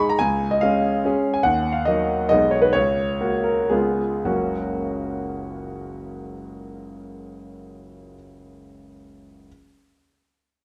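Classical romantic music in the form of a triple-time dance for solo piano, set in F# major with dotted rhythms lending it a proud, rustic character. The tempo moves freely with rubato, ranging from 104 to 155 BPM in 3/4, and the pulse slows down between 0.8 and 4.3 seconds as the opening phrase draws toward its close. A concert grand carries everything alone from 0.0 to 9.5 seconds, spanning F#1 to B5 with a deep bass, a smooth, vintage tone and a close, up-front presence. The harmony passes from C# through D#m, G#m/B and F#/C# to a C#7 that resolves to F# at 4.3 seconds, where a second section begins. A moderate recital hall reverb gives the instrument a natural sense of space in this short excerpt cut from a longer piece.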